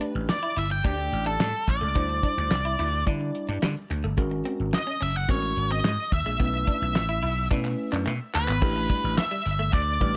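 This short, slick excerpt of early-eighties boogie funk sits in a small room with light reverb, its damped 70s drum kit dry and dark up front with a fat snare, tight kick, handclaps, hi-hat and crash, beside a growly, amped vintage slap bass at 108 BPM in a straight 4/4. An octave-fuzz lead guitar enters at 0.3 seconds and carries a distorted, picked solo through the funky sus4 chord changes until a drum fill from 7.5 to 8.6 seconds leads into a new section. Underneath, a worn, slightly out-of-tune tine electric piano comps, and a clean electric guitar with subtle chorus picks a riff in the background.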